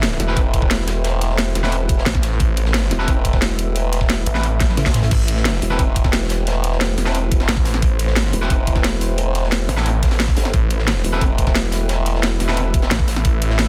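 Dark and tense, this excerpt of technical drum and bass drives a snarling, detuned saw bass and a wobbling formant-filtered bass up front beneath bright, double-tracked fuzz guitar stabs with digital delay, an overdriven drum kit with cracking snare and bright hats, a knocking layered electronic kick, a gritty, very quiet breakbeat kit, and a deep, moody pad in the background, all pressed into a dense, heavily limited mix with a drum fill at 4.6 seconds.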